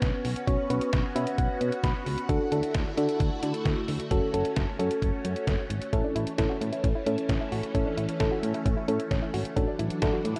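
Cool and melancholic, this synth-pop excerpt moves in a straight 4/4 over a chord sequence of Bsus2, Dadd9 and F#m before settling on A and closing on Dadd9/A. A mellow, vintage FM electric piano carries the accompaniment with a soft, warbling tone and a noise layer under its chorus, and it plays a fill from 0.9 to 2.3 seconds. Beneath it, a phased string machine holds sustained chords with a swirling, bright sawtooth sheen and a slow attack, treated with ensemble chorus and phaser. A punchy, round FM bass anchors the low end, while a detuned 8-bit digital drum machine sits up front with a thumpy kick, a medium-tuned snare and hi-hat in a sampler-style sound. From 5.9 seconds, a gentle, nasal pluck adds arpeggios dressed in chorus and tape echo, and the whole mix rests in light reverb and digital ambience.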